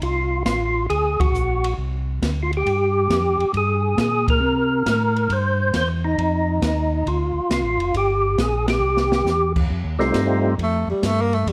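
A lightly reverberant mix opens this short soul jazz organ trio clip, soulful and swinging at 136 BPM in 4/4 with an eighth-note swing in F mixolydian. Up front, a fat, clean tonewheel organ carries the melody with percussive third-harmonic attack and audible key click, shimmering through chorus vibrato and a slow rotary speaker. Beneath it, a second, mellow tonewheel organ plays the bass line, round and dark with a touch of overdrive, chorus vibrato and the same slow rotary turn. An acoustic jazz kit sits further back in a small room, its dark, smooth cymbals, medium-tuned snare and boomy kick rolled off at the top. The band hits accents together and the drums play a fill as the harmony moves from F through D7, Gm7, C7 and F7 toward an F9. At 10.6 s the organ melody gives way to a breathy tenor saxophone with a soft attack, vibrato and scooped notes, playing a jazz-style solo until the clip ends at 11.5 s.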